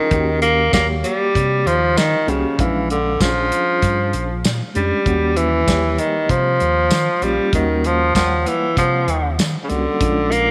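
A straight-eighth soul blues groove at 97 BPM in 4/4 with a light sixteenth-note swing sets a gritty, laid-back mood. An up-front tenor saxophone carries the melody with light vibrato in a vintage jazz style over a reedy electric piano with fast tremolo sitting in the background, a round, punchy fingered electric bass, and a tight, small-room soul drum kit of kick, snare, hi-hat and tambourine with a rolled-off top, all cycling through Eb7#9 and Bb7#9 chords in a moderate echo chamber reverb across this 10.5-second cut from a longer piece.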